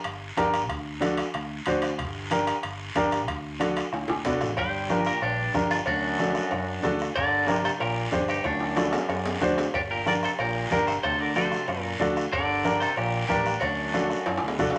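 A straight 4/4 cumbia groove at 186 BPM drives this fiery, danceable Latin piece in G harmonic minor, built from hard-handed, low-tuned congas, a raspy, distant guiro, ringing vintage metal-shell timbales and cowbell, and a soft-beater bombo, with a direct, amped fingered electric bass underneath. A woody upright piano sits up front on the chords moving between G minor and D7, and at 4.6 seconds a bright, twangy clean electric guitar with spring reverb takes the melody while a brilliant trombone with vibrato adds a second line further back. Drum fills mark the phrase turns, and the band plays in a wet studio ambience.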